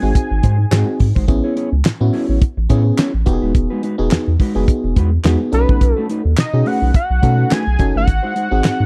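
A dry, close recording in a small room with a 1970s studio character carries this feel-good, danceable early-eighties boogie funk at 106 BPM in E major, its sixteenths swung and its harmony moving through G#7, Amaj7, Emaj9 and B7. A damped acoustic kit with a fat snare and tight kick sits up front beside a deep, round sine sub bass, while a glassy, bell-like FM electric piano with chorus and tube saturation, a dark, clean, fingered electric guitar riff in lush chorus, and crisp group handclaps entering in the background at 0.7 seconds fill out the groove. A fat, detuned sawtooth lead with vibrato and chorus sings a brief melody at the start and returns at 5.5 seconds.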